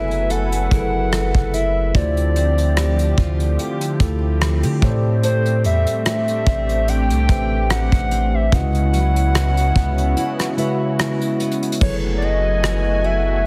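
Moody and late-night, this contemporary R&B excerpt moves at a slow 73 BPM in 4/4 with a light sixteenth-note swing, cut from a longer piece. A hollow, clarinet-like synth lead carries the melody with vibrato, chorus and tape echo, resting over a mellow tine electric piano and a lush, detuned unison pad treated with chorus and phaser. A picked steel-string acoustic guitar adds woody, full-bodied arpeggios in the background, while a deep, sine-toned 808-style bass sits up front with long, decaying notes. A soft brush drum kit with a tight kick, hi-hat, rim click and crash keeps time from 0.1 seconds, with a break arriving at 10.2 seconds, and when the harmony returns to F#m11 at 11.8 seconds the hi-hats drop out. The chords drift through lush minor-eleventh voicings, and the whole mix is heavily compressed into a radio-like sound within a small room ambience.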